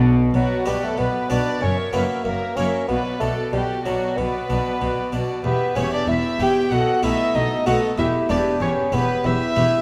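In a straight 4/4 at 94 BPM, this festive, brilliant baroque-style concerto movement in B minor, cut from a longer piece, sets a mellow solo bassoon melody over a dry, close-miked harpsichord, gut-string viola and cello sections, a rich double bass section and a very quiet violin melody, with a second, close violin line entering at 0.3 seconds, all moving through Bm, F#7, Em and B7 in a wet concert hall reverb.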